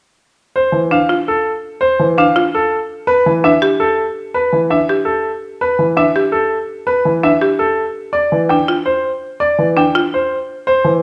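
A bright, brilliant grand piano opens the melody at 0.6 s, high in the treble, in this short minimalist classical pattern piece in D dorian, moving at a brisk 332 eighths per minute in 7/8 with a mood both meditative and urgent. A second, warm and intimate grand piano holds a low E3 accompaniment with audible action noise, a boxy tone and long sustain, while a buzzing marimba struck with hard mallets adds dry, woody, vintage-sounding arpeggios from 0.9 s to 10.2 s. The chords move from Dmadd9 to Em and then a rootless G7(no3) at 8.1 s, all set up front in a large studio with moderate reverb.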